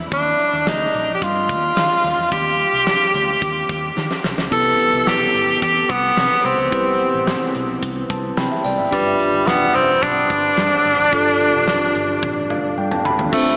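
A straight 4/4 pulse at 109 BPM drives this nostalgic, moody 1980s-style pop fragment. A bright, forceful tenor saxophone with vibrato carries the melody up front over a dark, foam-muted vintage fingered electric bass and a huge arena drum kit with a fat snare and punchy kick. A bell-like tine electric piano with subtle chorus joins at 4.5 seconds and adds fills at 7.8 and 12.2 seconds as the chords move from Eb to Cmaj7 to G7, and the dreamy mix is soaked in cathedral reverb with a small-speaker sound.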